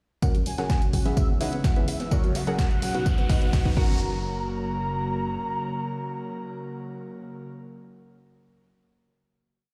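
The overdriven electronic kick drum stands out most, punchy and up front as it drives a four-on-the-floor pulse through a hopeful, expansive progressive house piece at 127 BPM in F# mixolydian, moving from a build over the first 4.0 seconds into a final hit. Beneath it, a plucky analog bass plays off-beat notes with a funky, fast-decaying attack, while an overdriven electronic hi-hat and a gritty, compressed breakbeat sampler-style kit with snare and tambourine add programmed hats, a looped break with edits and a drum fill from 2.1 seconds. Harmony comes from a breathy, airy pad holding sustained chords, a round analog pluck repeating a sixteenth-note riff over a pedal note with tape coloring and delay, and a deep, nasal chord stab in dotted rhythms with vintage sampler grit. The pad, pluck and stab all pump against the kick, and filter sweeps on the pluck and pad join a riser to push the build toward the hit. 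Over the top, a smooth, expressive synth lead with vibrato and analog chorus sings song-like motifs, and a light stone-room reverb gives the mix the feel of a big sound system in a bare space.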